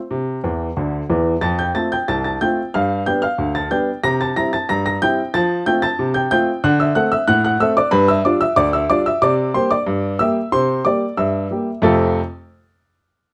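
Ragtime piano in F major at 92 BPM in a straight 2/4, playful and jaunty, carried by a single upright piano that sits up front, woody and intimate with short sustain and audible action noise, spanning C2 to Bb6. A fill arrives at 0.4 seconds, early in the passage, and the harmony steps through C, F, G7, C7 and F before turning through D7 and back via G7 and C7 to settle on F at 11.8 seconds as a new section begins. Moderate studio reverb frames the piano, which plays until 12.2 seconds in this passage cut from a longer piece.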